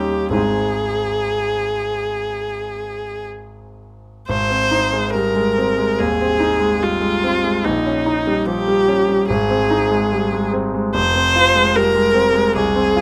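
Solemn and elegiac, this romantic classical duo for viola and grand piano moves in a slow 4/4 at 60-75 BPM with a rubato feel in Ab major, a passage cut from a longer piece that shifts into a new section at 4.3 seconds. Up front, the single bowed viola carries the melody between Eb4 and C5 with a focused, clear tone and vibrato, while the brilliant concert grand accompanies from a deep bass at F1 up to F4 with short sustain and a polished sheen. Close, detailed microphones and light reverb frame harmonies that pass from Ab through Eb7/Bb and back to Ab before settling on Fm at 11.0 seconds.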